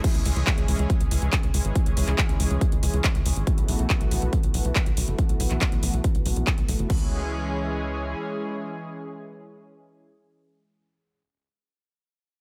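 Uplifting trance at 140 BPM in C# minor, driving and emotional, where a lush, detuned unison pad with chorus and sidechain pumping holds sustained chords from C#m to B7sus4 under a filter sweep while a punchy, up-front electronic kick and a kit of handclaps, crash and metallic hats play until 7.0 seconds, and a tight sawtooth sequencer bass with a plucky, decaying filter pumps beneath through the return to C#m until 8.1 seconds, after which the pad carries on alone in a dry, close sound.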